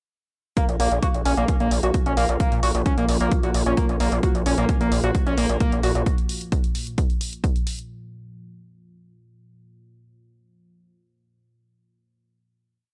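Driving peak-time techno in Bb minor at 131 BPM, dark and intense, built on a punchy, up-front four-on-the-floor kick and dry, overdriven programmed hats. A gritty, aggressive rolling sixteenth-note bass pumps against the kick, while a screaming, guitar-like overdriven synth lead with tape echo and vibrato repeats a 7-step sequence that drifts against the bar from 0.6 seconds. At 1.8 seconds a deep, moody detuned pad drone with chorus and reverb enters in the background, and once the other parts drop out around 6 seconds, the kick and hats carry on, the kick stopping at 7.5 seconds and the hats at 7.9 seconds.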